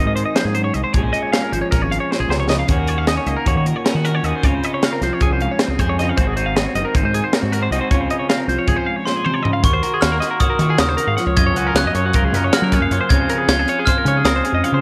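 Wistful and intricate, this math rock and midwest emo excerpt races along at 311 BPM in 9/8, with a slightly broken-up electric guitar through a small old amp bathed in lush chorus, a bright, twangy twelve-string electric guitar picking arpeggios, a growling overdriven fingered bass, and a crisp, up-front fusion kit with a high-tuned snare and punchy kick, all moving through chords like Ab7, Bbm7 and Dbmaj7 in a small, lightly reverberant room until a bell-like glockenspiel struck with brass mallets enters at 9.1 seconds carrying the melody through a slapback echo.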